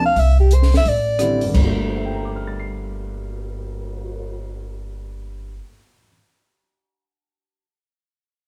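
Hypnotic and spiritual, this short fragment of modal jazz swings at 172 BPM in 4/4, centred on G dorian. A warm, close-miked soprano saxophone sits up front with a brief solo melody that gives way at 1.5 seconds, as the harmony moves from Am7 to Gm9. Woody pizzicato upright bass on steel strings anchors the low end, while a dry, compact cocktail drum kit supplies dark cymbals, a high-tuned snare, a punchy kick, hi-hat, rim clicks, a crash and a cymbal swell before stopping at 4.3 seconds. A natural-sounding baby grand piano joins at 1.2 seconds to accompany across a broad register, and it is the last part still sounding. The band plays live together in a small room, and its reverb lends the group an intimate, wet ambience.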